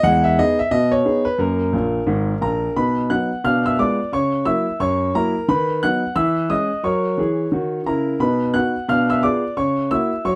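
Exuberant and swinging, this stride piano jazz excerpt in B major moves at 176 BPM, with a solo concert grand sounding clear, intimate and a touch boxy up front, its deep bass, long sustain and audible action noise set in light reverb and a dark production, as a brief fill at 1.7 seconds leads into a second section at 2.8 seconds that cycles through chords such as B, Bdim7 and F#7/C#.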